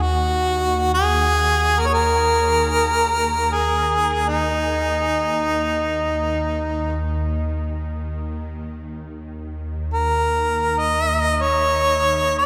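A harmonica and an ethereal pad drone begin together, opening this free-time world meditation piece in Eb minor pentatonic, tuned slightly low to A4 = 437 Hz. The close-miked harmonica carries the melody between Eb4 and Eb5 with a clear, up-front tone, light vibrato and scooped notes, and a tape echo trails its phrases. Beneath it, an airy pad holds a low Eb2 drone, blending detuned sawtooth and triangle waves with a sub octave, a slow attack and a long release, thickened by ensemble chorus and its own reverb. The whole recording sits in a vast, echoing cathedral-like space with a long decay, giving the mood a spacious, meditative calm. The melodic idea is stated once and returns at 8.6 seconds, and this portion of a longer piece ends at 12.5 seconds.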